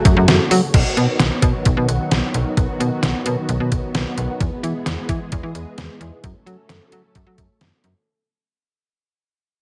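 A straight 4/4 pulse at 131 BPM drives this wistful yet upbeat synth-pop fragment, cut from a longer piece. A detuned 8-bit digital drum machine sits up front with a thumpy kick, a medium-tuned snare, hi-hat and crash cymbal, its sampler-style hits carrying a tape-warm character and the air of a large room. A slap-like FM bass, snappy with a metallic, fast attack that quickly decays, moves between B1 and F#3 alongside the drums. Meanwhile a vintage string machine voiced as cellos holds full, mellow sawtooth chords with a sub octave, slow attack and ensemble chorus, running from F#m through B and E before returning to F#m at 6.2 seconds. The whole mix has light reverb and a heavily compressed, radio-like sound capped well below the top of the treble, and it fades out from 0.7 seconds to the end at 8.1 seconds.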